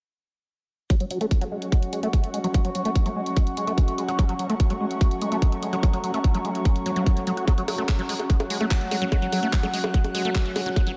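Psychedelic trance with a hypnotic, driving mood, this excerpt opens at 0.9 s with an up-front, tight electronic kick, a garage kit of bongos, handclaps and hi-hats, and a squelchy, saturated liquid acid bass riff whose resonant sawtooth tone is swept through a filter, phased, pumped by sidechain and trailed by a diffuse ambient delay. Over it, an overtone-sweeping drone holds sustained chords with ring-modulated, chorused sawtooth and sine layers, while an airy, breathy pad with a nasal, detuned tone floats higher, both pumping with the kick. A barely audible riser appears at 10.8 s, and the whole mix sits dreamy and soaked in a lush hall reverb.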